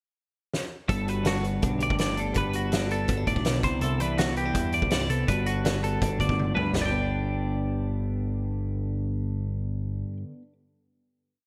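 Intricate and wistful, this short math rock and midwest emo piece moves at 164 BPM in G major, with a loose indie drum kit sounding roomy and distant, with a fat snare and tight kick, entering on a fill at 0.5 seconds and settling into a pop groove. From 0.9 seconds, two bright, clean, twangy twelve-string electric guitars sit up front, one picking a compressed ostinato with warbly pitch drift and the other playing syncopated fingerstyle arpeggios over Gmaj9, Cmaj9 and Gmaj7, while a growling overdriven bass stays locked to the kick drum. The drums stop after a second fill, and a final G chord rings from 6.7 seconds in a bright 1980s-style digital production with light studio reverb.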